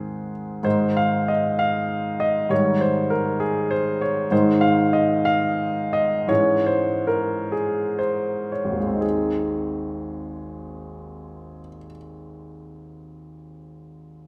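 Hopeful and warm, this romantic character piece for solo piano unfolds in Ab major at an unhurried, breathing pace of 37-67 BPM in a lilting 6/8, shaped throughout by free rubato. A clear baby grand sits up front, intimate and natural, with long sustain and the mechanical noise of its action audible beneath the notes, ranging from a deep Ab1 up to F5. The harmony rests on Ab, moving through Eb over an Ab bass and a darker Db minor colour over the same Ab before settling home again. The playing slows between 3.4 and 9.0 seconds, easing into a new passage that begins at 9.0 seconds as the harmony returns to Ab. A wet recital-hall reverb with a 1.4-second tail surrounds the instrument, lending the cut from a longer piece a glowing sense of space.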